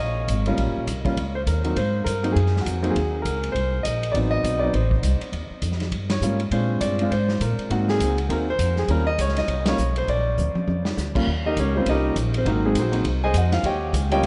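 A clear, up-front concert grand piano carries the melody in this relaxed, warm jazz piano trio excerpt, swinging at a brisk 202 BPM in Eb mixolydian over a blues-tinged progression built on Eb7, Ab7 and Bb7. A woody, thumpy pizzicato upright bass sits close beside it, and a muffled, lo-fi vintage drum kit with dark cymbals and a tight kick joins at 0.3 seconds. The band hits accents together at 6.1 and 9.6 seconds, and the drums play a short fill before the piano takes a solo at 11.3 seconds. The trio rings out in a vast, echoing cathedral-like space with a softened top end.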